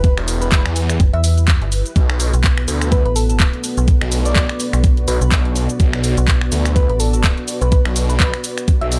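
An overdriven, knocking electronic kick sits up front in this aggressive, gritty bass house excerpt at 125 BPM, swung on the 16ths over Em and Bm7, with a house kit of cabasa, finger snaps, handclaps and soft-toned hi-hats set in studio reverb. Two basses pump against the kick: a metallic, decaying FM bass with tube saturation that stops at 7.8 seconds, and a thick, swirling, detuned saw bass with phaser and overdrive that enters at 0.2 seconds. Above them, a round, gentle, keys-like FM lead carries the melody through chorus and digital delay, while a deep, moody analog pad with 12-bit sampler grit sustains chords in the background and an ethereal, airy pad with ensemble chorus adds a sustained texture behind it.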